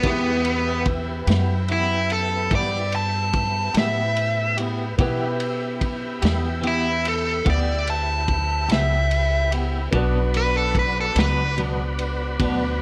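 Smoky and soulful, this slow blues excerpt moves at 49 BPM in a straight 12/8 feel over E minor, shifting to B minor at 9.9 seconds, while a biting, overdriven electric guitar plays an up-front solo with plate reverb until 11.6 seconds. Beneath it, a twangy, compressed clean electric guitar pulses with tremolo, a clear grand piano sits in the background, and a smooth tonewheel organ holds sustained chords through a slow rotary speaker and chorus vibrato. A woody pizzicato upright bass stands up front, and a muffled, lo-fi vintage drum kit with a punchy kick, medium-tuned snare and dark ride cymbal keeps time in a small room, all within a light reverb.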